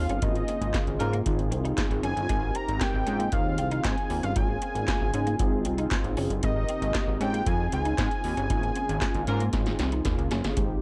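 A fat, detuned sawtooth lead carries the melody with vibrato and filter sweeps over a feel-good, smooth early-eighties boogie funk groove, cut from a longer piece. Underneath, a glossy, up-front chorused synth bass and a dry drum machine with deep kick, punchy snare, metallic hats and handclaps drive the straight 4/4 feel, while round, mellow synth brass, a shimmering, very quiet pulse-width pad and a scooped, clean semi-hollow guitar riff in the background fill out lush ninth chords. A tight horn section with octave doubling punches in briefly at 1.0 and 9.3 seconds, and a drum fill from 9.5 seconds closes out the dark, warm, nearly reverb-free mix.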